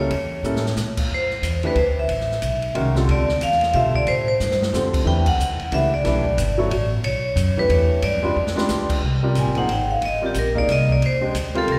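Searching and intense, this modal jazz excerpt in D dorian swings at 182 BPM in 3/4, with a ringing, metallic vibraphone carrying the melody through a medium motor vibrato. An intimate grand piano with audible action noise and long sustain comps beneath it, while a woody pizzicato upright bass sits up front and an open drum kit with dark cymbals and a boomy kick adds short fills. After a band accent at 5.2 seconds, the vibraphone takes a solo from 9.0 seconds over a Cm9 chord, all bathed in a wet scoring-stage reverb.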